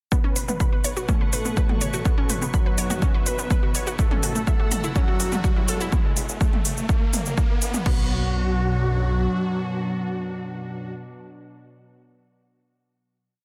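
Hypnotic, driving melodic techno in B minor at 124 BPM, this short piece builds for nearly 8 seconds as a punchy four-on-the-floor kick and smooth-hatted electronic kit with shaker, toms and crash push a rolling sixteenth-note sawtooth bass, a bright arpeggiated analog pluck, a fat, mellow lead riff with lush chorus, cassette tape character and tape echo, a bold polysynth doubling it an octave higher, both swept by filters, a morphing, warbling wavetable pad, a very quiet evolving drone and a background riser from 3.7 seconds, before the sustained parts resolve onto a final Bm chord at 7.9 seconds in a dense, heavily limited master.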